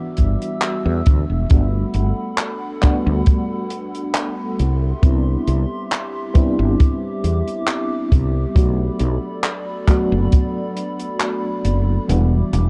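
This vaporwave excerpt drifts at a slow 68 BPM in 4/4 with a gentle swing on the sixteenths, and its mood is woozy and nostalgic, cycling through Em7, Gmaj9, Cmaj7 and Bm7 before returning to Em7. A mellow FM electric piano carries the accompaniment up front, its soft, round tone warbling through tremolo, analog chorus and analog delay. Behind it, a detuned, tape-like pad holds sustained chords with a slow attack and long release, adding a lo-fi shimmer of chorus and built-in reverb. Entering at 0.2 seconds, a woody fretless electric bass sits up front with a growly, hollow-body character. A compact cocktail drum kit supplies handclaps and hi-hat, and a tight, smooth kick drum carries the pulse until 10.5 seconds, both roughened by vintage 12-bit sampler grit. The production is dark and warm, with a faint mains hum lingering in the studio ambience.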